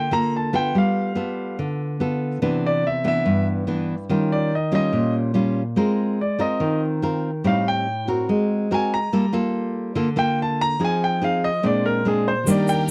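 A straight 4/4 bossa nova groove at 143 BPM in G minor sets a smooth, intimate mood, with a fingerpicked, full-bodied nylon-string guitar accompanying up front, its finger squeaks audible, while a clear concert grand piano with deep bass carries the melody as a solo through lush jazz harmonies such as Gm9, Cmaj9 and Ab69. Near the close, a worn, slightly out-of-tune tine electric piano, lightly overdriven and treated with phaser, slips into the background at 12.4 seconds, and at 12.5 seconds a distant, bowed symphonic violin section with vibrato adds sustained chords alongside a grainy, dry tube shaker. Close, detailed microphones and light reverb give this cut from a longer piece an intimate presence.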